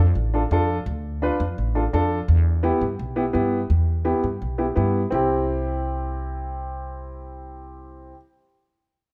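A thumpy, woody upright bass sits up front in this short, sunny Latin cut from a longer piece, plucked pizzicato on steel strings and moving between A1 and G2 from the very start at 0.0 seconds. At a brisk 170 BPM in a straight 4/4, the groove feels danceable and bright in C major, tuned slightly high at A4 = 441 Hz. An upright piano joins at 0.3 seconds as accompaniment, its natural, warm tone and long sustain ringing across the range from B3 to B4, also placed close to the listener. The harmony moves from Dm to Em before the passage shifts into a new section at 5.1 seconds, landing on C. A light reverb gives the pair a touch of space.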